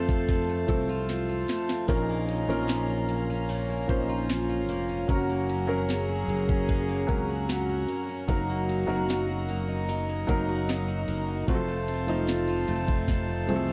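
Pop ballad, longing and emotional, in which a natural, short-sustain baby grand piano plays accompaniment, a picked steel-string acoustic guitar adds bright arpeggios with finger squeak in the background, a reedy, breathing pedal harmonium holds sustained chords, a distant, mellow French horn section carries a loose second line with light vibrato, a growly, punchy fretless electric bass sits up front, and a smooth R&B drum kit with knocking kick and sharp snare enters at 0.1 s and plays fills at 1.1 s and 13.1 s, set in a dark, warm small-room production.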